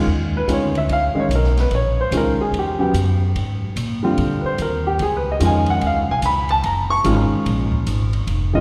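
A swinging 4/4 at 146 BPM drives this moody jazz piano trio excerpt, cut from a longer piece, where a warm, up-front baby grand carries the melody as a solo from 0.1 seconds through chords such as Ebsus2, Abmaj9 and Gbmaj9. A woody, thumpy pizzicato upright bass with steel strings sits close beneath it, while an open acoustic drum kit enters at 0.5 seconds, lower in the mix, with dark cymbals, a high-tuned snare and a punchy kick. The whole trio rings out in a wet church reverb with a long 2.8-second tail, giving the performance the airy sound of a large hall.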